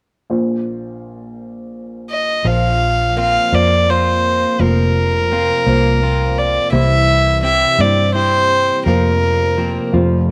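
Tender and hopeful, this slow folk passage in 6/8 at 56 BPM opens on a dark, woody upright piano whose audible action noise and slight detuning give it an intimate feel. A rich, reedy violin with a gut-string, period-style tone carries the melody up front from 2.1 s, joined by a round, foam-muted fingered electric bass with transformer saturation and, from 2.5 s, a bright, clean electric guitar picking compressed arpeggios through harmonic tremolo. Light reverb and studio ambience surround this short cut from a longer piece as it moves through Bbsus2, Fsus4 and C.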